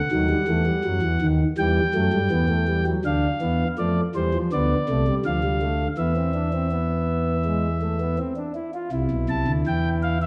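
A chamber organ on a principal stop carries this solemn, serious baroque-style fugue in three parts, its smooth chamber voicing sitting up front with a touch of chiff at the start of its notes. The piece moves at a steady 82 BPM in 4/4 with a straight feel, in E minor, and the organ plays alone throughout, spanning from B1 up to A5. The harmony opens on D#m before settling onto Em, then passes through Bdim/D at 3.0 seconds and a bare E5 before turning to Am near the close. The organ sounds within a recital hall whose reverb carries a 1.6-second decay, giving the lines a resonant surround. This short passage is cut from a longer piece and ends at 10.3 seconds.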